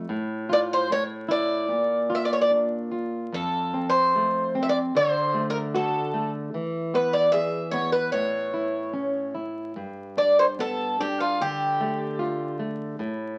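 A bright, shimmering twelve-string acoustic guitar carries the longing, passionate melody up front in this fado-style ballad excerpt in D minor, floating rubato at 75 BPM over a full-bodied, fingerpicked nylon-string guitar accompaniment, all heard through moderate studio reverb and the crackle of a very old 78 rpm record as the chords move from Bb through F, D, E, A and G before settling on Dm around 11.4 seconds.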